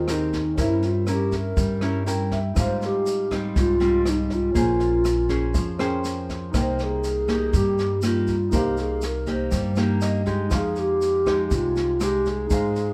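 A romantic, sophisticated bossa nova excerpt at 121 BPM in 4/4 with a straight feel opens with an alto flute, nylon-string guitar, baby grand piano and upright bass all sounding together. The flute carries the melody in a pure, hollow, distant voice with vibrato and a soft attack. Fingerpicked nylon-string guitar sits small and up front in the accompaniment, while the upright bass gives a woody, thumpy pizzicato line beneath. A jazz kit played with brushes adds a dark, smooth groove of kick, rim click and medium-tuned snare in a small room, joined by a grainy, faraway tube shaker. The piano stays low in the mix with an open, long-sustaining tone and steps forward for brief fills at 1.8 and 9.8 seconds, all under light reverb as the harmony moves through Abmaj9, C7b9/G, Fm9/Ab, Bbm9 and Cm7 before settling on Fm9.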